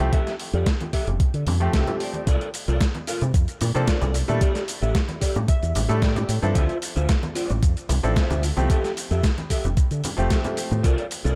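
Sensual and cosmic, this short nu-disco excerpt moves at 112 BPM in a straight 4/4, built on a lush chord cycle of Fmaj9, C13sus4 and A7sus4. An up-front electronic kick drum gives a thumpy, tape-warm pulse with the character of a large room, while a dusty soul sampler-style kit adds compressed, gritty hi-hat, shaker and an overdriven, medium-tuned snare. A fingered electric bass with an envelope filter sits forward in the mix, direct and saturated through tubes, pumping against the kick. A dark, slightly broken-up electric guitar plays the riff through ensemble chorus, a low-pass filter and dub echo, and clean electric guitar fills appear at 1.5 and 5.0 seconds. A brilliant grand piano supplies pumping accompaniment with dub echo, and ringing, hard-handed congas echo in the background of an echo-heavy mix with light reverb.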